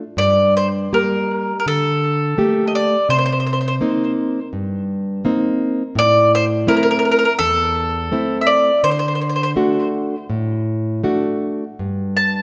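A dark nylon-string guitar opens this excerpt of an Italian folk serenade, fingerpicked in a classical style with finger squeak audible, and the mandolin joins at 0.2 seconds with the melody. The mood is wistful and romantic, set in G harmonic minor at 83 BPM in 4/4 with a loose, rubato feel. The mandolin's picked double strings have a warm, woody tone, and a touch of tape echo trails its phrases. Both instruments sit up front, while a wet recital hall reverb surrounds them with a sense of space. The harmony moves from Gmadd9 through Cm7, Am and D before settling on Gsus2 near 11.8 seconds, and both parts play through to the close at 12.4 seconds.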